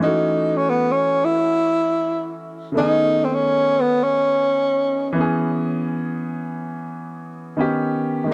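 Light reverb surrounds this short, mellow and smoky hip hop cut in F# dorian, moving at 87 BPM in 4/4 with a swung 16th-note feel. Up front, a breathy tenor saxophone carries the jazz-style solo melody with subtone, vibrato and scooped notes, its smooth top touched by analog delay, until it stops at 5.2 seconds. A woody, natural upright piano sits up front as well, accompanying through 8.3 seconds over F#m7, B13, C#m7 and D#7b13.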